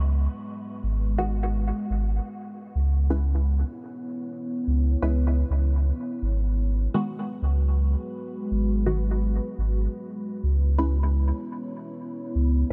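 Dub techno with a nocturnal, hazy mood, cut from a longer piece and moving with a light swing on the sixteenths. From the start, a deep, dark ambient pad holds sustained chords, its detuned sawtooth unison and sub octave swelling in slowly and trailing a long release through chorus and its own reverb. Beneath it, a pure sine sub bass sits up front, clean and smooth with a fast attack, carrying the low end throughout. At 1.2 seconds a filtered dub chord stab enters, its muted, detuned blend of sawtooth and square wave giving a short, mellow pluck coloured by phaser and dub echo. The harmony shifts between G#m7 and C#m7, and the overall sound stays dry in the room, so the pad's reverb and the stab's echo supply the sense of space.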